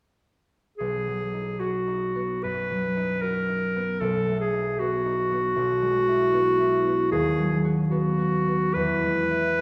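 Serene and lyrical, this romantic classical duo moves in a rubato 4/4 at roughly 69-78 BPM in B major, a brief excerpt cut from a longer piece. A bright solo clarinet carries the melody up front from 0.8 s, while a concert harp, fingerpicked and ringing, supports it with warm accompaniment reaching down into its low register. Both sit in a wet recital hall reverb heard from further back in the room, as the harmony passes from B through B7 and E/B to a close on E near 8.7 s.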